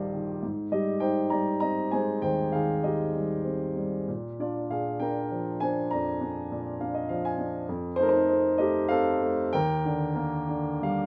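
Classical solo piano in a lyrical, sunny and relaxed mood, moving at 99 BPM in 3/4 with uneven, rubato timing and tuned slightly high to A4 = 442 Hz. A dark, mellow baby grand sits up front with a smooth, vintage tone and long sustain, spanning Bb1 to Bb5 over chords from Abmaj7 through Bb7 and F7 to Ebmaj7, with short fills at 6.5 and 10.5 seconds. Light reverb surrounds this brief passage cut from a longer piece.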